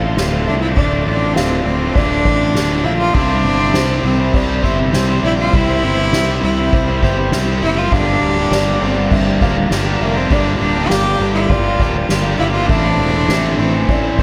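A clear, nasal cello carries the melody up front from 0.5 seconds, bowed sul tasto with a soft attack and a floating ambient delay, over a brooding, cinematic post-rock passage at 101 BPM in D minor, cut from a longer piece. A growly, punchy fuzz bass and two picked guitar riffs, one bright and distorted, the other overdriven and entering at 3.1 seconds, sit beneath it. Behind them, a soft-mallet drum kit with a boomy kick, a mellow felt-muted upright piano playing arpeggios with audible action noise, and a very quiet brassy, detuned sawtooth pad on sustained chords all drift in a dreamy, reverb-soaked hall through Dm7, C, Gm7 and Am.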